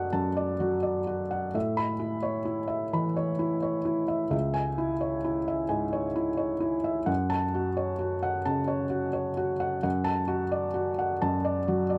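Melancholic and reflective, this short excerpt of neoclassical minimalist piano moves at a rubato 87 BPM in 4/4, settling in F# minor with a tuning of A4 = 441 Hz. A felt-muted upright piano plays alone throughout, its soft, mellow tone sitting up front and intimate, with audible action noise and a range stretching from C#2 to B5. Close, detailed microphones and little reverb keep the sound natural as the harmony drifts from D/F# through Aadd9, C#m and F#m before returning to D/F# at 9.8 seconds.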